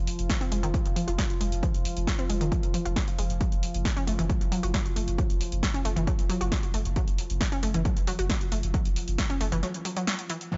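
A dry, dark-topped excerpt of relentless, driving peak-time techno, where a heavy layered kick and a punchy, tape-warm analog drum machine of hi-hats and snare carry a thick, saturated sine sub bass, a bright, detuned sawtooth pluck riff with overdrive and tape echo, and an evolving, nasal pulse-width drone with chorus, while the bass, drone, pluck and hats all pump against the sidechain and a filter sweep runs across the arpeggio until a break at 9.6 s ends on an up-front electronic impact at 10.5 s.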